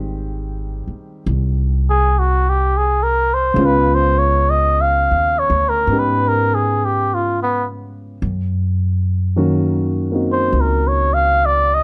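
A cup-muted trumpet carries the melody, entering at 1.9 seconds with a veiled, breathy tone, light vibrato and a smooth top, sitting up front in a soft jazz style. This wistful, smoky jazz ballad moves at a slow 52 BPM in 4/4 with a lazy swing on the eighth notes. From the start, a dark concert grand piano plays mellow accompaniment, its deep bass and short sustain keeping it natural and understated beneath the horn. An upright bass anchors the low end up front, its pizzicato gut strings giving a woody, thumpy sound. The harmony drifts from Abmaj7 to Db9 and then Gb6. Close, detailed microphones and light reverb give the room an intimate feel in this passage cut from a longer piece.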